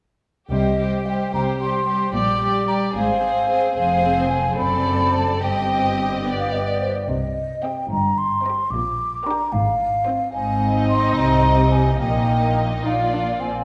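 In a straight 6/8, this quick, dramatic classical-period orchestral passage, cut from a longer movement, has a restless urgency. Muted violins carry the veiled melody while a second violin section, violas, cellos and double basses fill in below with dark, con sordino tone and vibrato. An airy, hollow flute sits up front on a second line above them, standing out as the strongest voice, and the rest of the orchestra is heard from further back in a wet scoring-stage room.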